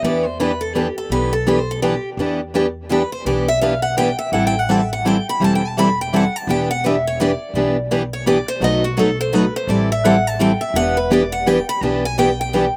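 A picked steel-string acoustic guitar carries a bittersweet, fiery E minor melody in this short cut from a longer jazz manouche piece, its bright, boxy parlour tone sitting up front with a slapback echo across the full 12.7 seconds. Two more picked steel-string guitars accompany it, one up front with finger squeak and an auditorium body, the other a fresh-stringed parlour guitar set in the background, while a woody, thumpy pizzicato upright bass anchors the low end. The swinging 168 BPM waltz in 3/4 moves from Em7 through Am7 and B7, and the outdoor recording carries little reverb and a dry feel.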